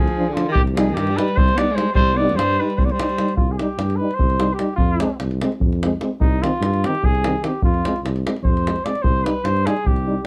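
In a dark, lightly reverberant recording, this restless, fiery Balkan brass band piece, cut from a longer work, drives along in 7/8 at 297 BPM in C harmonic minor, with a deep, compressed, saturated davul up front over a soft-attacked tuba bass, a French horn in the background and a euphonium sharing the accompaniment with light vibrato, and a bright, smooth-topped alto saxophone playing a second line until 3.4 seconds, when the mellow, vintage-toned trumpet melody up front becomes a solo that runs to the end.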